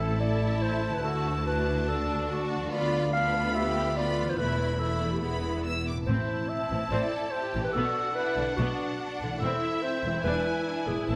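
Adventurous and swashbuckling, this cinematic orchestral excerpt in A minor moves at 143 BPM in a straight 4/4. Bowed violins carry a lush, vibrato-rich melody high above, while a second violin line and a soft-attack cello section sit in the background, rich violas supply smooth accompaniment, and a double bass section anchors the low end. A dark, punchy clarinet stands up front with a distant, roomy second line, a very quiet ringing harp spins thumb-plucked arpeggios, and timpani struck with hard mallets add a brief accent from 6.1 to 6.7 seconds, all within a moderate scoring-stage reverb.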